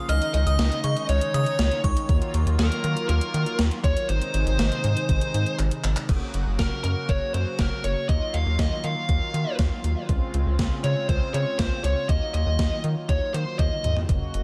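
Synth-pop at 120 BPM with a nostalgic, wistful mood, this excerpt rides on a gated 80s drum machine with a thumpy kick, overdriven gated-reverb snare, handclaps, hi-hat, toms and crash, plus a rubbery, bouncy square-wave bass that sits up front. A brassy, detuned sawtooth pad holds lush chorused chords from Dbsus2 through Ebmadd9, Ab, Gb and Dbmaj7, while a dark, fuzzed lead guitar carries the melody through distortion and digital delay. A glassy FM bell adds a crystalline second line only until 1.9 seconds, and drum fills arrive at 5.6 and 13.6 seconds within a light digital ambience.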